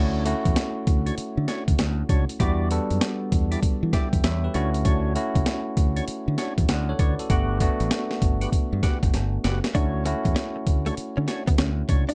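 Flirty and bouncy, this new jack swing R&B excerpt in D major at 98 BPM rides a swung sixteenth-note groove, with a gritty, compressed breakbeat sampler-style kit up front (thumpy kick, snare and hi-hat) entering at 0.3 seconds, a round, punchy fingered electric bass, bell-like tine electric piano chords moving from Dmaj7 through Em7 and Gmaj7, fat overdriven tonewheel organ stabs through a slow rotary speaker, and, after a drum fill at 9.1 seconds, a clean picked electric guitar riff with ensemble chorus arriving at 9.7 seconds, all set in light reverb.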